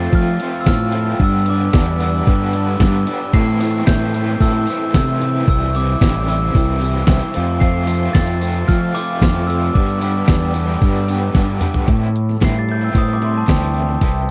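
Cool and restless, this 112 BPM indie rock excerpt in A minor pairs a mellow, bell-like glockenspiel melody with slapback echo against a crunchy chorused guitar riff, a raw garage guitar with tremolo, a growling overdriven bass and a thumpy, detuned 8-bit drum machine up front, while a shimmering string-machine violin pad and a jingly tambourine sit faintly beneath, all in a dry, close 1970s-style studio sound until a drum fill at 11.4 seconds hands over to a glockenspiel solo at 11.9 seconds.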